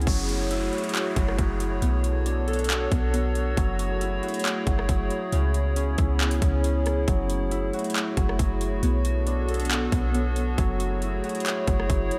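A dry mix opens this melancholic, spacious stretch of atmospheric cloud-rap, cut from a longer piece and moving at 137 BPM in 4/4 with a half-time feel in F# minor. A warbling, nostalgic pad sits up front, its detuned square and triangle tones with a sub octave blooming slowly into sustained chords, carried by chorus, its own reverb and sidechain pumping. Underneath, a clean 808-style bass gives deep, boomy sine notes with a fast attack that decay into darkness. The overdriven trap kit of hard-clipped kick, metallic hats, handclaps and rim clicks also sits up front, while an electronic swell and downlifter colour only the first 3.6 seconds. From 0.1 seconds a bright, thumb-plucked Celtic harp rings out in arpeggios through tape echo, over a loop of F#m9, Bm9 and C#m7.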